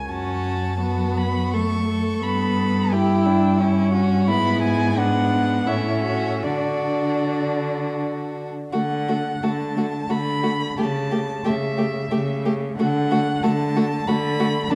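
Serene and tender, this excerpt from a slow romantic movement for string quartet unfolds in D major at 76-95 BPM in 3/4, with a flexible, rubato feel. A single bowed violin carries the melody from D5 to C#6 with a warm, smooth, even tone and vibrato, sitting at a distance, while a second violin plays a clear, close second line between D4 and A4. The viola fills in the accompaniment with a rich, expressive sound, soft attacks, vibrato and portamento, heard from afar. Underneath, the cello anchors the bass from F#2 to D3, focused and up front. The harmony moves from F#m through Em/G and E7/G# to A and settles on D at 6.4 seconds, then a second section from 8.7 seconds passes through A7/C# before returning to D at 12.8 seconds. A concert hall reverb with a 2.1-second decay wraps the quartet in a dark, warm production.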